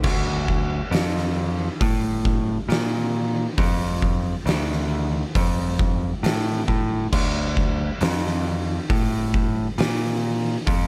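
A growling picked electric bass, overdriven and bright, sits up front in this brooding, sludgy stoner and doom metal fragment, churning in its low register across the full 10.9 seconds. An oversized low-tuned drum kit plays alongside it throughout, with a punchy kick, fat snare, hi-hat and dark crash cymbals ringing in a pumping stone room. The slow, straight 4/4 groove stays dry and close, giving the pair a heavy, crushing weight.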